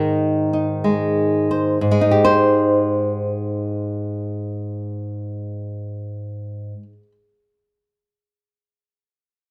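A dark, fingerpicked acoustic flamenco guitar sits up front from the first moment and plays alone for the full 7.1 seconds of this short excerpt, a playful solo jazz passage in Ab major at a slow 62 BPM with swung eighth notes. The guitar ranges from Ab2 up to C5, resting on an Ab chord before moving to Abmaj7 at 1.8 seconds. It is captured live in a large studio, where a moderate reverb adds a sense of space.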